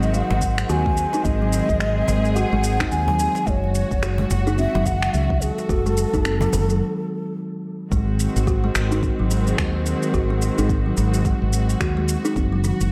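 A breathy, end-blown ney leads this hypnotic organic downtempo excerpt at 108 BPM with a 16th-note swing. Its expressive, tongued melody sits over veiled, con sordino strings, softly ringing kalimba arpeggios and a round, dark fretless bass that sits up front, with analog delay on both the ney and kalimba. A deep, layered kick joins tape-warm electronic shaker and finger snaps from 0.4 s, while a hard-handed cajon stays in the background until a break at 6.8 s, during which the ney drops out. From there the strings and bass, both pumping with the sidechain, carry on alongside the kalimba and drums under a dreamy plate reverb, with the chords moving from G#7 to F#m and back before settling on F#5.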